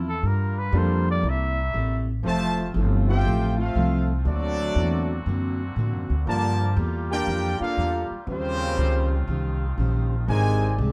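Picked steel-string acoustic guitar, a woody, growly pizzicato upright bass up front and nasal, straight-muted trombone chords open this energetic, brassy swing jazz passage in F major at 119 BPM. A warm solo trumpet with scooped notes and light vibrato carries the melody, and a grand piano with audible action noise adds a brief touch at 0.7 seconds. From 2.3 seconds a tight, close-miked trumpet section takes the melody over a bright trombone section's second line as the chords move from Fmaj7 through D7b13, Gm9 and Eb13 to Abmaj9#11, all in a dark production with light reverb, cut from a longer piece.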